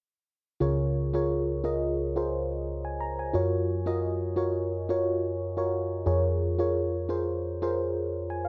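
A mellow FM electric piano plays solo from 0.6 to 8.5 seconds in this glossy, nostalgic pop fragment at 88 BPM with a light sixteenth-note swing in Db major, its soft, round, full-bodied tone with a noise layer, fast attack and decaying notes sitting up front through chorus and phaser, ranging from Db2 to Bb5 over Db6, Gbmaj7 and Db6/F chords, all framed by a dark production and a moderate scoring-stage reverb of 1.5 seconds.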